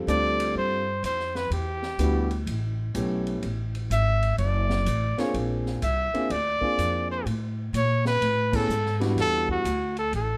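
A warm, smooth-topped trumpet with vibrato and scooped notes carries the melody up front in plate reverb, over a woody, dark pizzicato upright bass, a natural-sounding grand piano in accompaniment and a distant, roomy drum kit with dark cymbals, a high-tuned snare and a boomy kick, in a playful small-group swing and bop excerpt at 125 BPM that moves from F6 through Em7, A7 and D to Bb9 before a band accent at 8.5 seconds.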